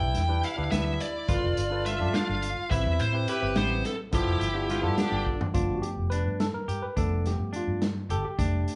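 A dark, high-gain lead guitar carries the melody up front, with a brilliant, punchy trombone adding a forceful second line with vibrato, over a barky tine electric piano, clean picked arpeggios on a hollow-bodied electric guitar, and a round, foam-muted fingered bass. This is bright, driving progressive band music in 5/8 at 211 BPM (eighths), in G mixolydian, played live in one large room. A muffled, lo-fi vintage drum kit with a tight kick plays a fill at 5.3 seconds, and the electric piano then takes a solo from 5.6 seconds.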